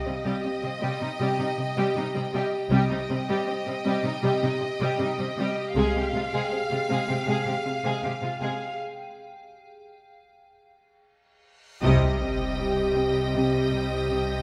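A straight 4/4 pulse at 79 BPM carries this eerie, ominous suspense cue in C minor, cut from a longer cinematic score, where a violin section sings a soft-attacked, expressive melody over a distant second violin line, lush background violas, a close, even cello riff and a focused cello bass, all bowed with vibrato. An icy, crystalline glass pad with chorus and airy reverb holds sustained chords throughout, while double basses add a low pedal from 2.7 s. After a break from 8.8 s, a reverse cymbal at 11.7 s leads to a huge sub-drop impact and band accent at 11.8 s, where the basses return and high, distant violins add a faint texture, all set in a wet scoring-stage reverb.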